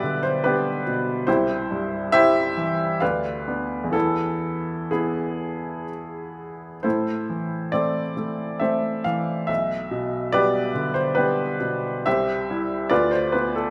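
A clear, woody upright piano opens alone on a G/B chord, playing a stormy, passionate romantic character piece in A minor and 3/4, moving with rubato at roughly 61-75 BPM and tuned to A4 = 441 Hz. Sitting up front and intimate, with audible action noise and long sustain, the piano ranges from B1 to F5 through C, Bdim/D and E before settling on Am at 6.8 s, then circles back through G/B and C. A moderate recital-hall reverb surrounds this brief excerpt from a longer work, which breaks off at 13.7 s.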